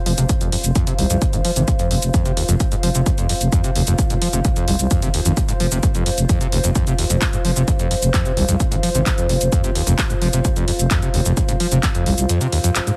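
Driving peak-time techno with an intense, relentless mood, this short excerpt is built on a heavy, layered electronic kick with a tape-warmed edge and a punchy analog drum machine playing handclaps, hi-hat and shaker. A growling, thick FM bass anchors the low end while an overdriven acid bass riff squelches with gritty, resonant sawtooth bite, distortion and tape echo. A warbly, nostalgic lo-fi pad drifts above with detuned, chorused softness, and sidechain pumping runs through the pad, both basses and the drum machine's hats and percussion, all under light reverb and a heavily compressed, radio-like sheen.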